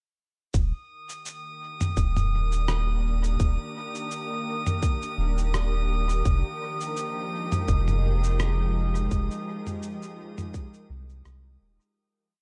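Ambient dub, spacious and meditative, with a deep, round sub bass and a tight electronic kick up front, a muffled, tape-warm sampler-style kit of cabasa, rim clicks and low toms scattering a sparse echoing beat, a bright organ-like pad with ensemble chorus fading in on slowly shifting chords that move from Ebmaj7 to Fm11 at 6.3 seconds, and a glassy, drifting texture holding a high note, all in a dark, dry production that fades out from 8.2 seconds.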